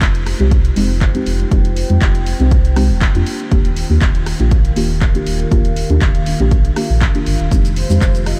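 A swung 120 BPM deep house groove in 4/4 rides a dry, punchy electronic kick and a punchy analog drum machine of handclaps, hi-hat, rim click and shaker, while a full sine sub bass with octave and mellow, detuned chord stabs under a filter sweep pump through Fm7 and Ebmaj9 in F dorian, a lo-fi, nostalgic tape-like pad warbles beneath, and a breathy, flute-like synth lead with vibrato slips in at 7.8 seconds, all wrapped in vinyl crackle for a deep, warm mood in this excerpt from a longer piece.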